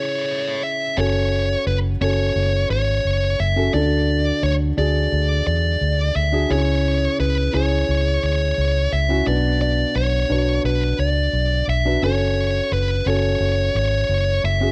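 A lightly reverberant sound frames this bittersweet yet driving piano-driven pop excerpt, where a dark, distorted high-gain lead guitar carries the melody up front over a soft, felt-muted upright piano with a thick, intimate tone, joined at 1.0 seconds by a round, foam-muted vintage electric bass as the chords move from F# minor through D, C# minor and B minor before returning home.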